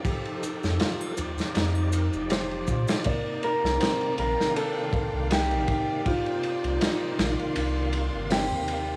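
Trip hop at 80 BPM in C dorian with a smoky, cinematic mood, this 9-second excerpt sets a bright, reedy tonewheel organ spun through fast rotary speaker, chorus vibrato, tremolo and tape echo against soft felt-muted upright piano arpeggios with audible action noise, a saturated, crunchy breakbeat kit with dark cymbals, a round, deep sine sub bass entering at 0.6 s, brief close maracas and triangle, a dark, compressed electric guitar melody with 12-bit sampler grit arriving at 2.3 s, and a focused violin section holding sustained chords from 3.1 s as F9sus4 gives way to Cm9, all in a dry, gritty small room with vinyl crackle.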